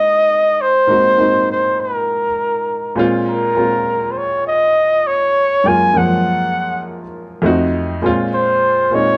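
A punchy solo flugelhorn carries the melody up front in this short soul clip, its vibrato giving the pop-style line a smooth, bittersweet voice between Bb4 and Ab5. Beneath it, an intimate baby grand piano plays the accompaniment, sitting a little lower in the mix, with audible action noise and a short, natural sustain. The two play together throughout, like a band sharing one room, wrapped in a wet studio reverb. The tempo is an easy 101 BPM in 4/4 with a light sixteenth-note swing, in Bb minor. The harmony moves through rich chords (Ab9, Bbm9, Gbmaj9, then a tense F7b9) before returning to Bbm9 as a new section begins at 8.0 seconds, just before the clip ends at 9.2 seconds.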